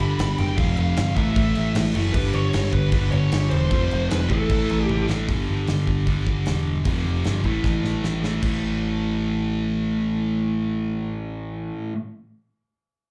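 A sludgy, double-tracked distorted guitar sits up front, grinding out a heavy riff in its low register from the start until 12.0 seconds, its overdriven tone warm. Beneath it, an overdriven picked electric bass adds a dark, round low end that runs until 11.7 seconds. A big acoustic rock kit drives this energetic, powerful hard rock passage with bright cymbals, a punchy kick and a medium-tuned snare, throwing in fills before it drops out at 8.5 seconds. Over the opening, a bluesy lead guitar, distorted and shadowy, carries the melody through slapback echo and digital delay, playing only for the first 5.0 seconds. The sound is of a live club gig heard through the venue's PA, with a touch of club reverb around a straight, driving groove, cut from a longer performance.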